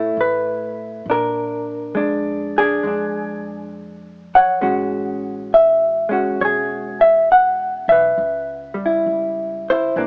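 Smoky and wistful, this brief fragment of a swung jazz ballad puts a dark, clean, compressed hollow-body electric guitar up front, its picked chords moving from F#m7 through A#7 and Amaj13 to C#m7b5. A woody, pizzicato upright bass sits in the background beneath it. Light reverb and the sound of worn, warbling old cassette tape, with pitch drift and a small-speaker quality, give the whole piece a faded, nostalgic haze.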